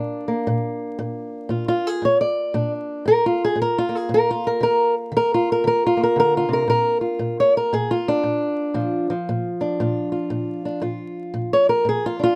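A lightly swung 4/4 groove at 116 BPM drives this laid-back, rollicking acoustic country blues in B-flat mixolydian, cut from a longer piece. A fingerpicked old ladder-braced acoustic guitar plays alone and up front, its old strings giving a dark, woody, boxy tone as it moves from Bb to Eb5 at 4.6 seconds and back to Bb at 6.7 seconds. Close, detailed microphones, little reverb and a layer of vinyl crackle give the recording an intimate, vintage feel.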